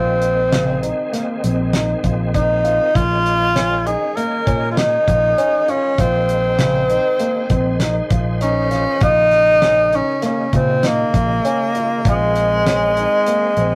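A rough rehearsal-room recording with moderate booth ambience captures this intricate, driving excerpt of progressive band music in an uneven 5/4 meter, circling between Fm7/Bb and Bbm. Up front, a clear tenor saxophone carries a jazz-style solo melody with vibrato, soft attacks and scooped notes. Beside it sits a dry, mid-forward 70s drum kit with a fat snare and tight kick, entering at 0.2 s. A punchy fretless electric bass anchors the low end, a dark, mellow baby grand piano adds arpeggios, and a full, shouting tonewheel organ, lightly overdriven with chorus vibrato and a fast rotary speaker, sits in the background.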